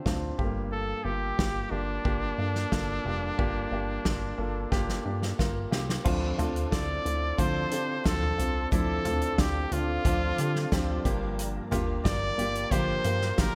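Driving and earnest, this piano-driven pop excerpt moves at 90 BPM in a straight 4/4, in D minor, cut from a longer piece. A polished grand piano carries the accompaniment alongside a plucky, dark analog bass with a fast attack and a funky, punchy bite, while an up-front acoustic drum kit with a medium-tuned snare and a punchy kick sounds like a small room, adding crash, hi-hat and toms. A clear trumpet takes the solo melody from 0.7 seconds, singing with vibrato and a smooth top in a pop style. A drum fill at 4.7 seconds leads into the second section at 6.1 seconds, where a bright, full-bodied jumbo steel-string acoustic guitar enters in the background with a picked riff thickened by ensemble chorus. At the same point a very quiet, flute-like tonewheel organ adds soft sustained chords through a slowly turning rotary speaker. Moderate plate reverb and a bright 1980s-style digital production frame the whole, with the harmony moving from Gm7 to Dm7 and back to Gm7.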